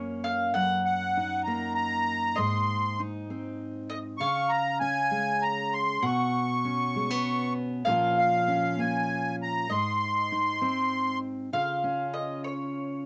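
This short acoustic folk cut from a longer piece has a gentle, warm mood and an unhurried lilt in six-eight time. A fingerpicked steel-string acoustic guitar sits up front with an auditorium-style body, while a picked mandolin adds a round, double-string second line high above it. The accordion carries the melody from 0.9 s, its reedy, sweet yet dark tone shaded by light tremolo tuning and a smooth cassette-tape colour. After the accordion drops out at 11.2 s, the mandolin takes a brief solo at 11.5 s as the music moves into a new section. The whole performance sits in a modest small room and has the intimate feel of a home cassette recording.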